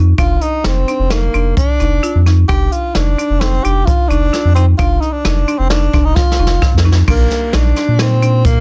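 A dry, woody marimba struck with hard mallets opens this short cut from a longer progressive instrumental, its arpeggios sitting low in the mix above a deep, round sine sub bass that is held close and prominent. At 0.2 seconds a breathy tenor saxophone enters with an intimate, whispered jazz lead, soft in attack and coloured by vibrato, alongside a brushed drum kit with a boomy kick, medium-tuned snare, hi-hat and dark crash cymbal that sounds natural and close in a small room. The mood is tense and driving, carried by a straight feel in an uneven five-beat meter over a suspended Ebmaj7sus2/F harmony. A drum fill arrives at 6.2 seconds and leads into a brief closing passage at 7.1 seconds, where the harmony settles on Bb. The sound is dry with little reverb, and the master is dense and heavily limited in a modern style.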